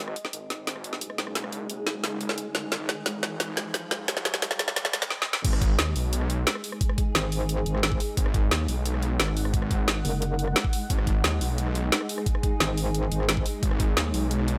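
A straight 4/4 pulse at 176 BPM drives this aggressive, mechanical excerpt of dark technical drum and bass in G# minor, opening with a build-up where an overdriven drum kit with a woody snare and bright hats runs a fill under a background riser, while a swarming, tense drone holds sustained chords and a thick, detuned saw bass sits up front. At 5.4 seconds the drop lands with a knocking, overdriven electronic kick, and the drone's slow-attack granular haze keeps pumping under the sidechain. A metallic FM wobble bass with tube saturation and chorus cuts through in short bursts, first at 7.2 seconds.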